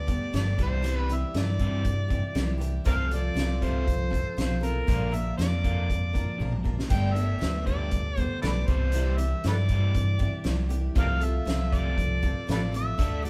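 A straight 4/4 pulse at 119 BPM drives this warm, open-road folk rock and heartland rock excerpt, where a gritty, amplified harmonica with scooped notes and tongue slaps carries the melody over shimmering, octave-doubled twelve-string acoustic guitar, a crunchy double-tracked electric guitar riff, a round, up-front fingered bass and a distant, roomy indie drum kit with a fat snare, dark cymbals and a fill at 6.4 seconds, all played live in one stone room as the chords move from Gadd9 through Cadd9, F/C and Bb.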